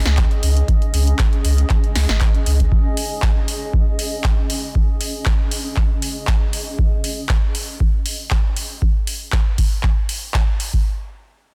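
Acid house at 118 BPM in 4/4, this hypnotic, trippy excerpt rides a light 16th-note swing. A round, sine-like sub bass sits underneath with a fast attack and sustained notes between G#1 and C#2, pumping against the sidechain before dropping out at 2.7 seconds. A cloudy, granular pad drifts above in the C#4 to D#5 range, its slow attack, wave-folded edge and built-in reverb giving a blurred, evolving haze that also pumps and ends at 6.8 seconds. The electronic kick is deep, dry and up front, running nearly the full length alongside an analog drum machine supplying handclaps, a punchy snare and metallic hi-hats in a small room ambience. The overall mix is dense and heavily limited, with little reverb beyond the pad's own.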